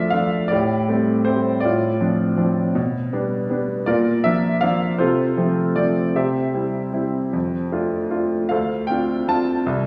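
A clear, worn baby grand piano sits up front in this reflective, dark excerpt of lyrical classical solo piano, drifting in a rubato 6/8 at 53 BPM from C2 to A5 through chords moving from Dm and Am7 toward Bb, F/C and a closing Dm7 at 8.5 seconds, all bathed in a wet two-second scoring-stage reverb.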